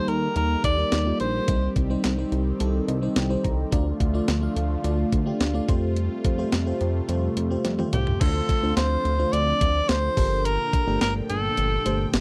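A bright alto saxophone opens this romantic, nostalgic 1980s-style pop piece at 107 BPM, its scooped, lightly vibratoed phrase sitting up front with a slapback echo over a lush, dreamy FM electric piano with a soft pad layer, treated with chorus and tremolo, and a swirling, detuned analog pad carrying phaser and chorus. A glossy chorused synth bass and a thumpy, sampler-style digital drum machine join almost at once beneath a progression of Eb, Cm, Dm and Fadd9, with the electric piano adding a fill at 2.6 seconds. The saxophone returns at 7.9 seconds, during a drum fill that leads into a new section at 8.2 seconds built on Dm7 and Gmadd9, all captured in a dry, close studio sound.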